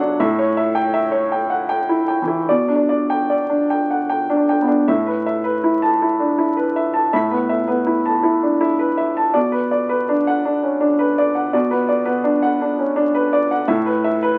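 In a rubato 3/4 that drifts between 74 and 84 BPM, this melancholic, reflective fragment of neoclassical minimalist piano unfolds on a single bright upright piano, tuned to A4 = 439 Hz, whose woody, short-sustained tone sits up front and spans A2 to C#7. Harmonies move from A7 to G/B before a new passage opens on Asus2 at 4.9 s, passing through Bm and returning to Asus2 at 13.7 s. A moderate studio reverb surrounds the instrument, and the crackle of a very old 78 rpm record lends the sound an aged patina.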